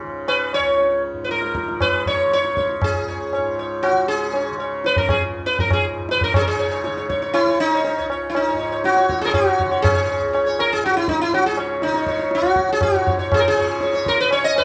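In a straight seven-beat cycle that speeds up throughout, this introspective, solemn Hindustani classical excerpt opens on a softly plucked, buzzing tanpura drone, joined at 0.3 seconds by an up-front, plectrum-plucked sitar shimmering with sympathetic strings and a close, high-tuned, ringing tabla, moving into a new section at 6.3 seconds as the trio plays live together in a moderately reverberant large studio.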